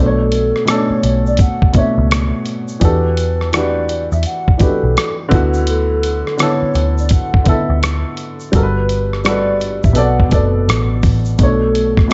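Digital ambience with nothing above 7.9 kHz frames this reflective, melancholic lo-fi hip hop fragment in B minor at 84 BPM with a swung 16th-note feel, where a dark, woody upright piano with audible action noise and cassette-tape coloring plays accompaniment, a round, foam-muted vintage electric bass holds the low end, a gritty sampler-style drum kit with a thumpy kick, hi-hat and rim click enters at 0.3 s alongside a very quiet, grainy egg shaker, and a hollow, warbling clarinet-like synth lead with chorus and vibrato carries the melody over chords moving from Bm9 through Em11, D69 and Gmaj9.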